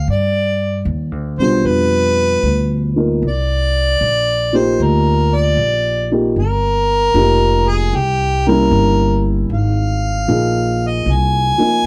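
A dry, close recording in a small room gives this short excerpt of a late-night, romantic jazz ballad an intimate, 1970s studio character. At 77 BPM in 4/4 with a swung eighth-note feel, a harmonica carries the melody from the first moment, its warm tone touched with scooped notes and a roomy, distant quality even as it sits up front. Beneath it, a pizzicato upright bass on steel strings sounds woody and growly, holding the low end close to the listener from the start. A dark upright piano joins at 1.4 seconds with mellow, boxy accompaniment. The harmony moves from G7 through Cm9 and F9sus4 to C7b9 before settling on Fm7.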